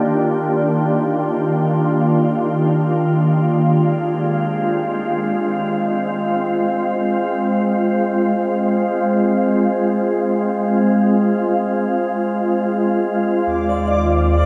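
Serene and weightless, this ambient excerpt drifts in free time, led by a glassy, ethereal FM pad holding sustained chords up front that move from Ebmaj7 to Fm, its slow attack and long release softened by ensemble chorus. At 13.5 seconds the harmony returns to Ebmaj7(no3) as a deep, round sub bass enters, joined at 13.6 seconds by a bright, reversed granular texture high above. A cathedral reverb with a 6.2 second decay soaks the dreamy mix.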